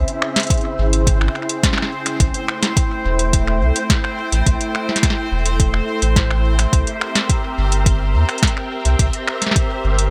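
IDM at 106 BPM, cerebral and glitchy, this short cut from a longer piece drifts from C#m through Am7 to C7 under light digital ambience. A silky, vintage string machine holds slow-blooming chords through phaser and ensemble chorus, while a round sine sub bass sits up front and a resonant, bubbling sawtooth texture steps randomly through its filter with chorus and its own reverb. A booming analog drum machine with tonal snare, metallic hats and finger snaps carries delay, joined at 0.5 seconds by a deep, up-front electronic kick.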